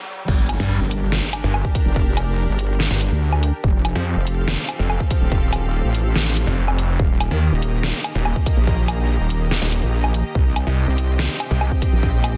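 A background riser sweeps into an impact at 0.3 seconds, launching an aggressive, chaotic half-time wobble dubstep drop at 143 BPM in G minor, where a punchy kick and deep-snared kit with hi-hat, crash and woodblock sit up front beside a heavy, chorused wobble bass and a growling, distorted saw bass with a moving notch, all over a lush supersaw pad carrying 12-bit grit and sidechain pumping through Gm, Fadd9, Eb and Cm in a dense, heavily limited, dry mix cut from a longer piece.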